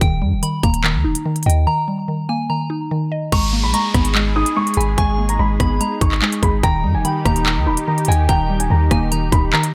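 Cold and dark, this half-time drill excerpt sets a soft, pure synth bell and a woody, round mallet-like pluck over a deep, sine-toned 808-style bass and an up-front drum kit with a hard-clipped kick, crisp hi-hats, rim clicks, handclaps and crash, with a break from 1.7 to 3.3 seconds. At 3.3 seconds a boxy, dark concert grand piano takes the melody, joined by a warbling, detuned analog pad holding sustained chords and a downlifter sweeping through to 6.6 seconds. The bell carries phaser and tape echo, and the whole piece sits in a digital ambience.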